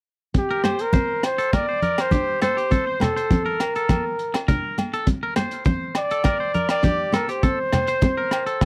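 A mellow, forceful trumpet leads this sunny, danceable highlife guitar band groove, playing a jazz-style solo melody up front with scooped notes and a smooth top from 0.4 seconds. Underneath, a gritty breakbeat drum kit with a tight kick, hi-hat and rim click sits saturated and dark, its top rolled off, while low-tuned congas struck with soft hands add a thick-skinned thump. A twangy, clean electric guitar picks compressed arpeggios from 0.5 seconds, and a full-bodied, fingerpicked nylon-string guitar fills in the lower accompaniment with a deep classical tone. Ringing agogo bells join at 0.7 seconds, over a straight 4/4 feel at 102 BPM. The harmony circles around Bb, moving through colors such as Bb6, Bbsus2 and Bbadd9, and the dry, close 1970s-style studio sound keeps every part intimate in this excerpt cut from a longer piece.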